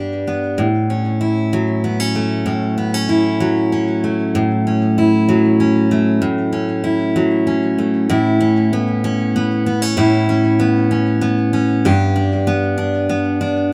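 Pop in a tender, heartfelt mood, this short cut from a longer piece moves at 64 BPM in a straight 6/8, tuned slightly low to A4 = 438 Hz. A lone picked steel-string acoustic guitar, full-bodied and jumbo-sized in tone, sits up front across the whole 13.7 seconds, ranging from G2 to G4 with a touch of digital delay and moving from G to A6, then to Aadd9 at 8.1 seconds before settling back on G. A modest small-room reverb and a rough home-demo mix give it an intimate, unpolished feel.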